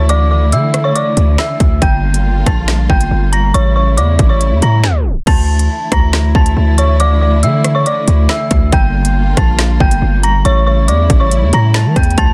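Ominous and cold, this half-time drill excerpt at 139 BPM in D harmonic minor sets an eerie, inharmonic FM synth bell melody with chorus over lush, bowed symphonic strings holding sustained chords through Dsus2, Gm7 and A7. A heavy, aggressive distorted 808-style bass sits up front beside an electronic drill kit with a hard-clipped kick, woody snare, crisp hats, finger snaps, rim clicks and crash, carrying vintage 12-bit sampler grit. The dry, dense, heavily limited mix hits a tape stop from 4.8 to 5.3 seconds before the second section begins.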